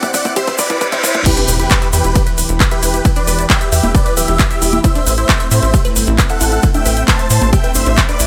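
A straight 4/4 pulse at 134 BPM drives this euphoric, bittersweet uplifting trance passage in E minor, cut from a longer piece. An overdriven electronic kick sits up front beside a big-room kit of congas, crash, handclaps, metallic hi-hats and ride, with a grainy egg shaker, while a reverse cymbal leads into a drop at 1.3 seconds that lands on an impact. From 1.5 seconds, a tight, punchy sequencer bass joins the huge, bright, detuned supersaw lead melody, the pluck arpeggios carrying phaser and tape echo, and a thick, chorused pad, all pumping with sidechain over chords moving from C to Em to Am.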